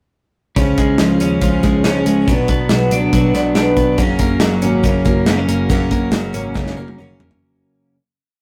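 A rough rehearsal-room recording with tube saturation and light reverb frames this short, nostalgic and breezy jangly indie pop piece in F# major, moving at 140 BPM through a single verse over C#, Bm and F#. Up front, a twangy, compressed twelve-string electric guitar plays a fingerpicked roll pattern, joined by a boxy parlour twelve-string acoustic guitar with fresh strings and finger squeak strumming octave-doubled barre chords, while a dark, foam-muted electric bass drives eighth notes in the background. A studio drum kit with a punchy kick and a pumping room keeps a brisk backbeat on hi-hat, kick, snare and toms, and the piece fades out from 5.7 seconds under a drum fill that starts at 6.6 seconds.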